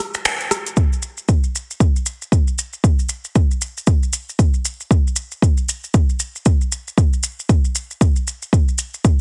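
A layered, up-front electronic kick drum enters at 0.8 seconds to drive this deep, hypnotic house fragment at 116 BPM with a swung 16th-note feel, after a brief opening break in which a tape-warm deep house kit of finger snaps, metallic hi-hats and rim click plays from 0.1 seconds with a band accent at 0.3, while grainy, mellow maracas sit close and dry through the whole passage in a dense, heavily limited mix with little reverb.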